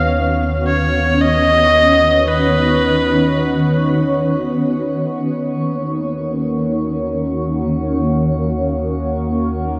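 This serene, reflective ambient fragment in free time and Eb minor opens all at once with an amplified electric violin, an ethereal pad and a low rumbling drone, set in a vast cathedral-like space with a long, wet reverb. Played by one bowed player up front, the violin carries a nasal, earthy melody with light vibrato, portamento and a smooth top, drifting through shimmer reverb and diffuse delay before falling silent at 4.0 seconds. Alongside it, the granular pad, also up front, holds sustained chords with slow attacks and long releases, its octave-up shimmer, chorus and phaser giving it a dark, evolving glow. The ominous drone sits low on D#2, mixed well beneath the other parts. Harmony moves from Badd9 over D# to Ebm7 at 4.5 seconds, after which pad and drone continue alone until the clip ends at 9.8 seconds, cut from a longer piece.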